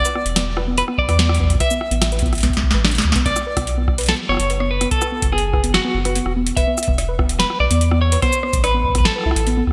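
Cerebral and melancholic, this 145 BPM IDM excerpt in B minor sets an up-front clean electric guitar melody with tremolo and digital delay over soft, chorused pluck arpeggios, a deep, round analog bass with tube saturation, a booming analog drum machine with crisp snare, metallic hats and gated reverb, and a tape-warm electronic kick entering at 1.0 seconds, with a drum fill at 2.4 seconds, all in bright 1980s-style digital production.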